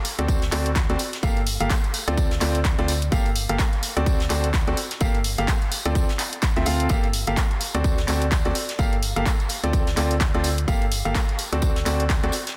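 Soulful and energetic, this piano house cut from a longer piece rides a swung 4/4 groove built on a cycle of D7, Gm9 and Dm7 chords. A clear, polished concert grand carries the riff up front from 0.2 seconds, its short sustain given motion by sidechain pumping and a digital delay. Beneath it, a hollow, organ-like FM bass with a fast attack and dark, decaying tone adds tube-saturated weight and pumps with the groove. A punchy, overdriven electronic kick sits up front from 0.3 seconds, landing on top of an overdriven house kit of handclaps and hi-hat that was re-recorded in a large room and plays from the very start. In the background, a soft brush kit adds hi-hat, a medium-tuned snare and tambourine, with high-pass filtering, pumping hats and percussion, and soft clipping on the snare, all within light small-room ambience and a dense, heavily limited master.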